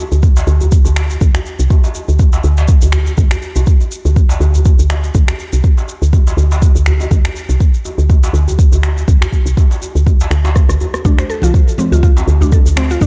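A woody, round FM bass and a layered electronic shaker with finger snaps and rim click open this earthy, driving afro house excerpt in D minor at 122 BPM. They are joined almost at once by a deep, up-front electronic kick and a tight, cracking djembe that sits distant in a large room. The mellow bass carries sidechain pumping under a dark production with little reverb, and after a drum fill at 10.6 s a detuned, mallet-like FM synth pluck arrives at 11.0 s with chorus, dub echo and sidechain pumping, alongside bright, high-tuned, saturated congas played with hard hands in the background.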